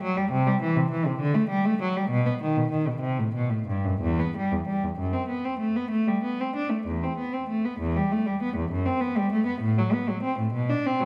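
Rubato 12/8 unfolds at roughly 58-68 BPM in dotted quarters through this grave, flowing fragment of a baroque-style suite movement in E minor, tuned to A4 = 439 Hz. A lone bowed cello plays throughout, up front and in period style, its dark gut-string tone reedy with a smooth top, ranging from E2 to D4. A wet recital hall reverb with a 1.7 s tail surrounds the cello, and the music moves into a new section at 7.8 s before the clip ends at 11.1 s.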